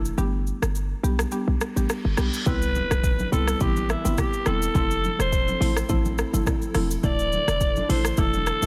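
Sunny and joyful, this short afrobeats excerpt at 105 BPM in C major opens with a buzzing, woody marimba, a punchy, heavy 808-style bass and an electronic afro-pop kit with deep kick, metallic hats and shaker, the kick muted until 2.5 seconds, when a reverse cymbal lands on an impact and a raspy, growling alto saxophone with digital delay takes the lead over soft-handed congas and, from 3.1 seconds, a very quiet, hollow, warbling pad, all in a dry room.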